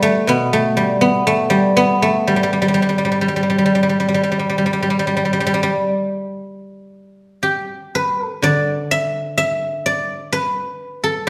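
A solo guzheng, plucked with fingerpicks and sitting up front, opens this pastoral, serene passage of Chinese traditional music, its silvery, ringing tone unfolding in a free rubato across a span from B2 to E5 before shifting into a new section at 6.5 seconds, all bathed in the lush reverb of a recital hall.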